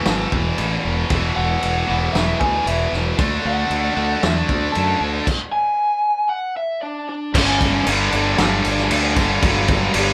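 Recorded as a band playing live in one room with moderate studio reverb, this restless, bittersweet quiet-loud alternative rock excerpt moves at 115 BPM in a straight 4/4. A bright, double-tracked distorted guitar riff and a growly fuzz bass sit up front over a loose indie kit with a fat snare, punchy kick and dark cymbals, while a lead guitar through a small cranked amp enters at 1.4 seconds with an overdriven solo line. A stop falls from 5.3 to 7.3 seconds, and the chords move from Esus2 to D5 before landing on G5.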